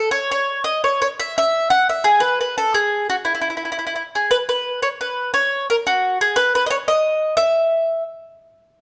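A woody, double-strung acoustic mandolin plays alone and up front in this sunny, romantic Italian folk fragment in E major and a straight 6/8 at 117 BPM. It is picked between E4 and F#5 and moves into a new section at 4.3 seconds, set in a dark production with a moderate recital-hall reverb.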